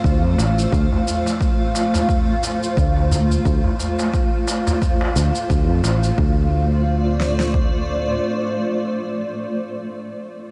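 Mystical and meditative, this short organic downtempo passage in D minor moves at 88 BPM with a swung sixteenth feel, resting on a single Dm7 chord in a dreamy mix soaked in huge ambient reverb. A cloudy, detuned granular pad holds sustained chords through lush chorus and sidechain pumping, while a growly, up-front fretless electric bass sustains beneath it until 8.2 seconds. An overdriven deep house kit with a punchy kick and fat snare carries the groove alongside a gritty, tape-toned cabasa and a deep, distant clay-shell darbuka; the hand percussion drops away by 6.2 seconds and the kit by 7.7 seconds.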